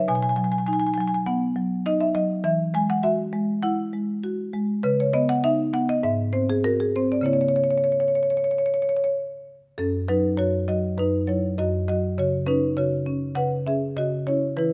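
A woody, round-toned marimba played with soft mallets sits up front as the sole voice in this flowing, hypnotic contemporary classical passage from a longer work, moving with rubato at about 100 BPM in 4/4 through C# dorian harmony across a range from F#2 to G#5, its mellow bars captured by close, detailed microphones within a moderate recital hall reverb.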